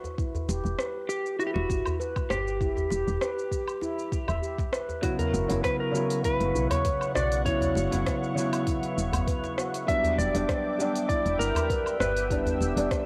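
A ringing handpan with a filter sweep and tape echo opens this hypnotic, meditative organic downtempo piece at 99 BPM, alongside an overdriven organic electronic kit of smooth hats, rim click, shaker and woodblock, a tight, cracking djembe in the background and a barely audible bronze singing bowl, followed by a soft overdriven electronic kick drum. A round, woody FM bass with tube saturation sits low, while an up-front, clean lap steel guitar carries the melody with slide and volume swells from 1.1 seconds. At 5.0 seconds a felt-muted upright piano with audible action noise and a detuned sawtooth analog pad with chorus arrive, both pumping to the sidechain, all heard through a moderate spring reverb and a cassette home-recording haze.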